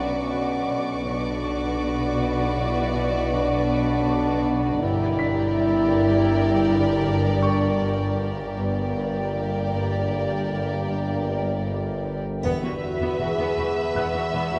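A wet, spacious scoring-stage sound frames this mysterious, uneasy suspense cue in 5/4 at 80 BPM, cut from a longer piece, where a distant, vibrato-rich violin section carries the melody over a second violin line, glassy glass harmonica and prominent French horn chords, a ringing fingerpicked harp riff, dark double basses with portamento, lush cellos, a resonant overtone-sweeping drone with chorus, and a brilliant piano with audible action noise, while high violins add texture until 4.4 seconds and return at 12.4 seconds, when a faint triangle briefly sounds as the harmony moves from Bmadd9 through Gm to Eadd9.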